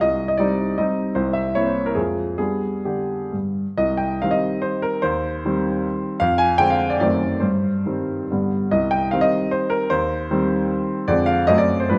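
A moderate recital-hall reverb, about 1.4 seconds long, surrounds a clear, present grand piano placed up front in this short cut from a longer romantic classical piece. It is a triple-time dance in 3/4 and C minor, with dotted rhythms and a rubato feel, and the tempo moves between 122 and 168 BPM. The solo piano spans from C2 up to Ab5, and its mood is capricious and nostalgic. The opening phrase moves from C minor through C7 and F minor to G. At 3.8 seconds a new passage begins, returning to C minor and then colouring the harmony with a half-diminished chord over F and an F-sharp diminished seventh before settling on G. This passage then repeats its turn through C minor and ends poised on an F-sharp diminished chord at 11.5 seconds.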